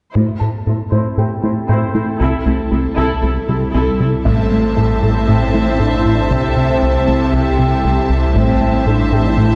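This cinematic hybrid orchestral and electronic film score excerpt moves at 117 BPM in a straight 4/4 in A minor, tense and relentless as it alternates between Am and C6. A warm symphonic viola section carries the accompaniment with vibrato and expressive portamento, joined by a rich cello section in the background, an ethereal, airy pad with chorus and tremolo, a very quiet unison pluck playing detuned arpeggios, and a soft felt-muted upright piano adding a delayed, intimate texture. A rubbery, hollow square bass drives the riff up front, while a filter sweep runs through the opening stretch. At 4.3 seconds the music thickens: a smooth violin section takes a second line above, a mellow, roomy French horn section holds sustained chords, a snarling, growling distorted saw bass digs in below, and a close, dry taiko ensemble struck with hard sticks hits briefly at 4.3 and again at 8.4 seconds. 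The whole mix sits back in a wet scoring-stage reverb, sounding distant as the tension holds.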